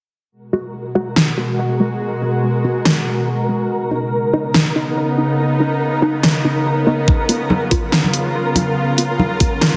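A filtered dub chord stab opens this cavernous, meditative deep dubstep excerpt at 0.5 seconds, its muted, resonant sawtooth plucks sitting dark in the background, run through phaser and dub echo over a G#m7 chord. Moments later a tense, string-like bowed drone swells in up front with a slow attack and vibrato, joined by a flickering, granular texture on a high A#4. At 142 BPM in a half-time feel with a light swing, an overdriven dubstep kit of huge snare and bright hats arrives, re-recorded in a small room and placed close. The harmony moves through Badd9 to C#7 in G# dorian, and at 7.1 seconds a knocking electronic kick drops in, soon followed by ringing, medium-tuned congas played with soft hands and trailed by dub echo. The whole mix sits in a wet echo chamber yet is squeezed into a heavily compressed, radio-like sound.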